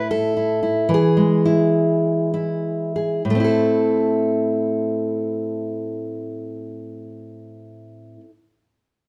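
A moderate studio reverb gives this short folk fragment, cut from a longer piece, a sense of being heard from further back in the room, with a haunting, reflective mood. A lone fingerpicked steel-string acoustic guitar carries everything, its auditorium-like, warm tone sitting up front as it moves from A5 to E while slowing down over the opening 3.2 seconds. It then settles onto an A minor chord for the closing phrase, which ends at 8.3 seconds.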